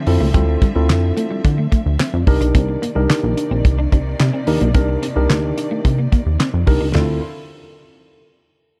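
A dry drum kit with a fat snare, tight kick, hi-hat, toms and handclaps drives this danceable early-eighties boogie funk excerpt, joined by a punchy, plucky analog bass up front, a worn, slightly out-of-tune tine electric piano, a twangy picked clean guitar riff with ensemble chorus tucked in the background, and lush, woody bowed strings holding sustained chords as the harmony moves from Dm9 to Cm9, all set in a dark, warm small-room sound.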